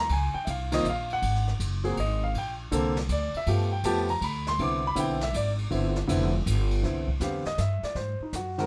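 This is a relaxed jazz piano trio in a swung triple-metre lilt, a short cut from a longer piece. The concert grand carries the melody and takes a solo through the opening 6.8 seconds. Its intimate tone has deep lows, long sustain and audible action noise, and it sits up front beside the woody, pizzicato upright bass. The harmony moves through rich chords such as Dbmaj13, G9 and Cmaj9 before a new section begins at 6.8 seconds and settles on Ab7. Softer in the mix, a brushed kit enters at 0.1 seconds, with dark cymbals, a medium-tuned snare and a boomy kick in a natural studio room. A light reverb gives the whole trio a gentle, unhurried glow.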